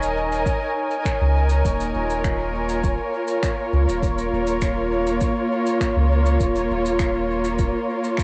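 A steady, straight 4/4 pulse at 101 BPM comes from a shaker and finger snaps with a rolled-off top, soaked in dub echo, joined at 0.5 s by a deep, layered electronic kick, while a round, soft sub bass sits up front beneath them. Over this, a close, veiled chamber string section plays muted sustained chords with vibrato, moving from Eb7(no3) to Bbm/Eb, as a bubbling, detuned sawtooth texture with random filter steps and chorus hovers in the background around Db5. This short cut from a longer ambient dub piece has a meditative, hazy mood, with cassette tape colouring the strings, drums and texture, and light small-room reverb giving it the feel of a home recording.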